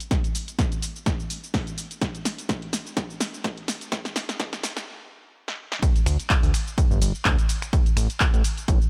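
A dry, punchy, up-front mix with little reverb and a high-pass filter opens this euphoric, joyful piano house excerpt at 126 BPM in 4/4 with a light 16th-note swing, where an analog drum machine of snaps, handclaps, hi-hat, ride, shaker and snare joins an electronic kick in a small room, building through drum fills and a filter sweep until a stop at 4.9 seconds. The drop lands at 5.8 seconds, and at 6.1 seconds a fat, thick sawtooth bass with a detuned edge and sidechain pumping enters, sustaining low notes between G1 and D2 beneath the joyous groove.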